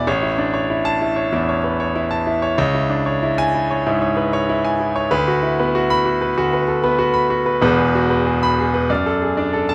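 Close, detailed microphones and a light reverb give this recording an intimate, polished sound, with the audible action noise of a bright grand piano sitting up front. A virtuoso classical piano study, cut from a longer piece, it unfolds in 4/4 with a free, rubato feel across a range from E1 to B5. The solo piano's long sustain lends the brief passage a brilliant, sparkling mood.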